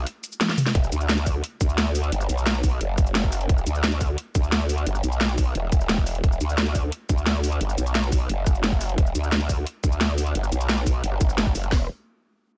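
A growling, detuned bass with formant filtering, chorus, overdrive and sidechain pumping opens this dark, futuristic technical drum and bass excerpt in E minor at 175 BPM, joined at 0.1 seconds by an overdriven electronic kit of cabasa, bright hi-hats, cracking snare and toms that plays a brief break with a drum fill before a second up-front electronic kit with tight kick, hi-hat and snare enters at 0.8 seconds, in a dry mix.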